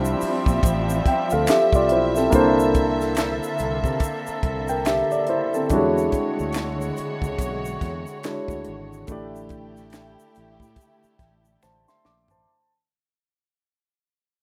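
A warm concert grand piano with deep bass and long sustain provides the accompaniment in this introspective, soulful neo-soul excerpt at 71 BPM with a swung 16th feel, joined by bowed studio strings with vibrato and a soft attack, a fretless electric bass with subtle chorus, a tube shaker with finger snaps and group handclaps, and a dry, tight funk drum kit with a high-tuned snare, moving through Dm11, C13, E13 and A7sus4 in a rough home demo mix with light reverb that fades out from 0.3 seconds to a drum fill at 11.6 seconds.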